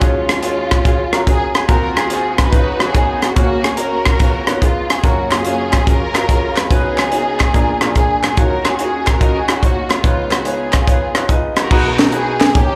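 A lush bowed string section carries the melody with expressive vibrato and portamento, over a grand piano with long natural sustain, both touched by slapback echo, while a crisp fusion drum kit with bright cymbals, a high-tuned snare and a punchy kick sits up front in a pumping small room. This reverent yet jubilant uptempo gospel swings its eighth notes through rich chords such as D#m11, C#13 and F#maj7, and a human group handclap joins in the background at 5.3 seconds. The sound is of a live gig heard through the venue's PA with light club reverb, cut from a longer piece.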